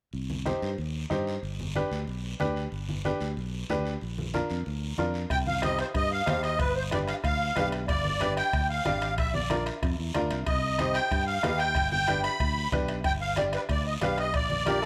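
A light reverb gives this fiery, danceable cumbia a lively sheen. It is a short cut from a longer piece, moving at a brisk 186 BPM in straight 4/4 and centred on C minor, with the harmony cycling through Cm, G, G7 and Bb. From the start, a dark, round fingered electric bass sits up front, joined by a raspy guiro, low-tuned congas with a thin, soft-handed skin tucked in the background, and a worn, woody upright piano that sounds slightly detuned and sparkles as it comps. At 5.3 seconds a reedy musette accordion takes the melody up front, its shimmering, airy tone carrying the tune. At the same point a bombo played with a soft beater deepens the groove, and very quiet timbales add a ringing metal-shell touch. In the final moments, from 14.7 seconds, a punchy trombone with vibrato bursts in forcefully for a brief second line just as the cut ends.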